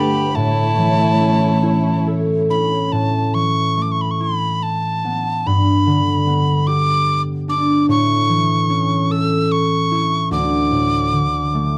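The rhythm moves in a loose 6/8, with uneven beats and a rubato pulse that stretches and yields in the manner of a Celtic slow air. This short, tender, nostalgic folk passage is cut from a longer piece. A breathy, bright tin whistle carries the melody up front in its high register, with a crisp, chiffy attack and a touch of vibrato. Beneath it, a fingerpicked concert harp rings out close and warm as the accompaniment throughout. At the opening, a single rich fiddle adds an intense, somewhat boxy second line with an airy bow until 2.1 seconds. A muted string section holds dark, veiled chords until 2.9 seconds, after which whistle and harp carry the rest. The small-room sound is dry and close, with a 1970s studio character.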